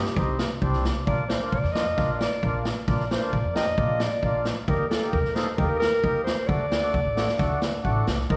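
A warm, classical-style clarinet carries the solo melody through this soulful, bittersweet klezmer fragment, moving between G4 and Eb5 at 133 BPM in a straight 4/4. Beneath it, a reedy, full-bodied accordion with a mellow, close-miked and dry tone supplies the accompaniment, joined by a woody pizzicato upright bass strung with steel. A street-band drum kit comes in at 0.1 s, sitting up front with a boomy kick, a medium-tuned snare and a rolled-off top that gives it a small-room, mid-forward character. The harmony moves from Cm to Bb, then to Eb at 4.7 s and D at 6.5 s. A moderate stage reverb with a 2.0-second decay places the ensemble in a church or concert hall, lending the whole passage a spacious, resonant setting.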